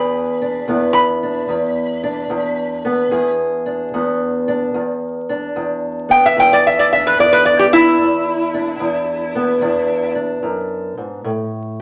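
A loping 4/4 shuffle at 74 BPM, swung on the eighth notes, sets a laid-back, soulful mood for this fragment of acoustic country blues cut from a longer piece in E mixolydian. A metal-body resonator slide guitar carries the melody up front, its bright, nasal, metallic voice played with fingerpicks and a slide, ranging from E4 to B5 before falling silent at 10.1 seconds. Beneath it, a fingerpicked steel-string parlour guitar provides a dark, boxy accompaniment from E2 up to G#4, also close and present. The harmony rests on a single E7 chord until it drops out at 11.2 seconds, leaving the accompaniment to ring to the end at 11.8 seconds. A wet studio reverb and a layer of vinyl crackle lend the sound an aged, lived-in patina.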